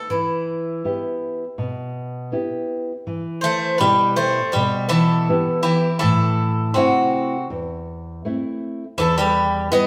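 A live band plays together in a wet stone room, its reverb lending the whole short excerpt an echoing air. This is brooding, bittersweet Greek folk in E minor at 81 BPM, in a straight 4/4. A picked bouzouki carries the melody from the outset, its double strings, some of them octave-doubled, ringing with a metallic sheen. Close behind it, a nylon-string guitar sits up front with dark, thumb-plucked classical accompaniment. At 3.4 seconds a second bouzouki enters up front with a lower line, adding the same doubled-string shimmer, while the harmony moves from Em to Am at 6.0 seconds and returns to Em before the cut.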